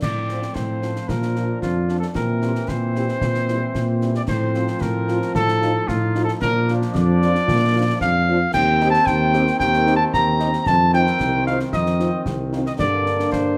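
A festive, spirited military-style march for wind band in a straight 2/4, heard as a short cut from a longer piece, with a mellow cornet carrying the melody up front, its vintage tone colored by vibrato. A clear trombone section holds sustained chords with light vibrato, while a close-miked tuba supplies a soft-attacked, dusky bass, and a dark French horn section enters at 0.3 seconds to fill in accompaniment tightly in the background. Concert snare drum, clash cymbals with a shadowy edge, and concert bass drum keep the acoustic percussion close, all set in a moderate large studio reverb.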